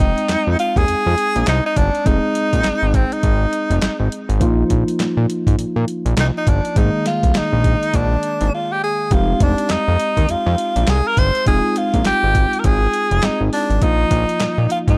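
Punchy and bouncy, this is a swung new jack swing R&B cut taken from a longer piece, with a dark, softly reverberant production. A breathy tenor saxophone carries the melody up front, close-miked and clear, playing in a jazz style with vibrato, subtone and scooped notes, and a delay trailing its lines. Beneath it, a fat analog bass with a detuned, saturated sawtooth tone and a plucky filter snap sits prominently in the mix. A tine electric piano supplies clean accompaniment through a combo amp. From 0.2 seconds, a crisp 8-bit drum machine adds a thumpy kick, a medium-tuned snare, hi-hat and handclaps with a tape-warm, sampler-style character. A brief break falls at 8.5 seconds before the minor seventh chord returns and the groove carries on.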